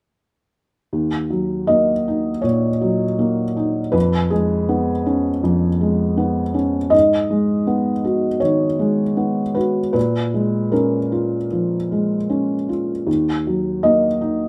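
A rubato pulse around 80 BPM in 4/4 carries this melancholic, reflective neoclassical minimalist piano passage in Eb minor, cut from a longer piece. A felt-muted upright piano plays solo from 0.9 to 14.5 seconds, spanning Eb2 to Eb5 through a progression of Ebm7, Db7/F, Abm7 and Bbm7 before settling on Ebm. Its dark, boxy, intimate tone sits up front with audible action noise, wrapped in a light reverb.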